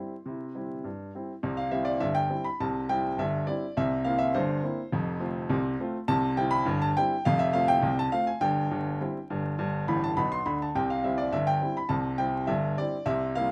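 A straight 2/4 pulse at 103 BPM drives this lively, jaunty ragtime piano piece in C major, heard as a brief cut from a longer work. A solo grand piano plays from start to finish, its clear, up-front tone with short sustain spanning from F1 up to C6. A short opening passage gives way at 1.4 s to a longer section, where the harmony moves from C through C7 to F, back to C, then F again, C over G and G before resolving home to C. The piano adds a fill from 9.9 to 10.8 s, leading into that final C. Light reverb surrounds the piano, and a layer of vinyl crackle gives the recording a vintage character.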